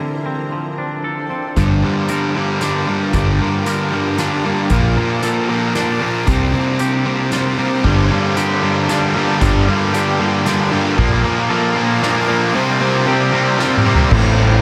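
A shimmering, detuned pad and a twangy clean guitar picking arpeggios through analog delay open this brooding, melancholic post-rock excerpt in G minor, moving in a straight 3/4 at 115 BPM over chords like Gm7, Bbmaj7 and C7sus4. At 1.6 seconds a bright, up-front overdriven guitar riff, a growling overdriven fingered bass and a distant, roomy drum kit played with soft mallets enter to start a long build-up, joined at 7.8 seconds by a biting second guitar riff soaked in spring reverb. The whole dreamy mix sits in a huge, wet ambient reverb, and a drum fill closes the build just before the chords land on Am7 at 14.1 seconds.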